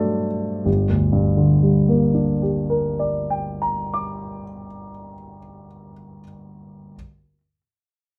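A warm concert grand piano carries this brief fragment of a romantic character piece alone, its deep bass and short sustain placed up front in the sound. The mood is stormy yet bittersweet, set in G minor and moving in 3/4 with a rubato feel, the tempo drifting between 69 and 93 BPM. The harmony opens on a D7 over G before settling on G minor at 0.7 seconds. Its range stretches from G1 up to D6. The tuning sits slightly high at A4 = 443 Hz, and a moderate studio reverb adds a touch of room around the short, 7-second cut from a longer piece.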